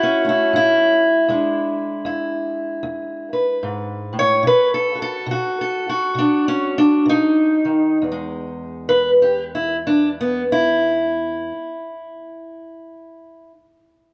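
A lone fingerpicked steel-string acoustic guitar carries this short cut from a longer piece of rollicking, soulful acoustic country blues, its dark, boxy parlour tone sitting up front in a swung 4/4 at roughly 61-79 BPM in E mixolydian. Moving from A to E7 and B7, the playing slows from 1.3 to 8.0 seconds before settling onto E as a new passage begins. A wet spring reverb surrounds it, and the room is heard from further back.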